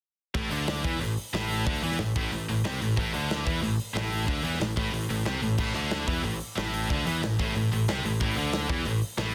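A dense, heavily limited modern master with small room ambience frames this heavy, aggressive heavy metal cut, taken from a longer piece and driving at 183 BPM in straight 4/4 on A minor. Two bright, scooped, high-gain electric guitars play distorted, picked riffs from 0.3 to 9.3 seconds, alongside a growly picked electric bass recorded direct. An up-front acoustic drum kit with a medium-tuned snare, punchy kick, hi-hat and crash cymbal powers the whole passage.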